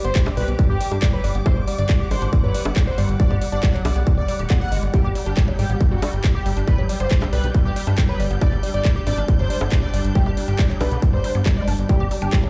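Psychedelic trance at 138 BPM in G major, alien and intense, cut from a longer piece and set in a large, reverberant digital ambience as if played on a big sound system in a bare room. A fat, detuned sawtooth bass sits up front with a distorted, layered electronic kick that enters at 0.2 seconds, beneath a drum and bass kit of bongos, handclaps and metallic hi-hats, while a woody, wave-folded pluck riff with chorus and dub echo warbles through the middle. A bold, detuned unison lead carries the melody with phaser, digital delay and vibrato, and a bubbling stepped-filter pad holds sustained chords in the background as dark, veiled con sordino strings add texture behind it, the lead, pluck, pad and strings all pumping to the sidechain.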